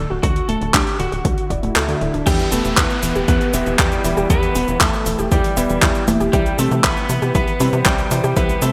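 Bittersweet and danceable, this italo disco excerpt in E minor at 118 BPM pairs a bright, twangy, slightly broken-up lead guitar melody and a warbling, lo-fi pluck arpeggio with a tight, nasal sequencer bass, a punchy overdriven electronic kick and an up-front gated 80s drum machine of cabasa, congas, crash, handclaps and hi-hat, while a background swell and downlifter rises under a brief kick dropout before the clangy electric grand piano enters with stabs at 2.3 s, all set in a lush digital hall of bright 1980s-style production.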